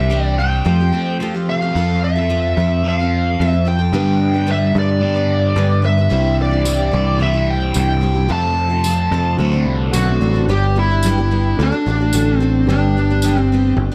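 A smooth, overdriven lead guitar carries the melody up front with slapback echo over shimmering, octave-doubled twelve-string acoustic picking and a punchy electric bass in this nostalgic, jangly folk rock and heartland rock excerpt, while a double-tracked semi-hollow guitar plays a phased riff until 10.5 s; from 6.1 s a reedy electric piano with fast tremolo and a soft, flute-like tonewheel organ join, and a jingly tambourine enters at 6.7 s, in a dark, warm production with light reverb.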